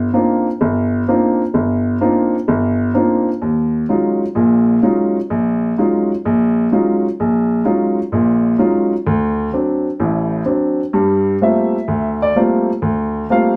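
Swinging eighths at 128 BPM in 4/4 carry this intense, searching jazz fragment, cut from a longer piece, in which a solo upright piano, woody and boxy with audible action noise and long sustain, sits up front in a moderate club reverb, moving through Cm11, Ebm11 and D7 before turning to Gm11 at 10.9 seconds.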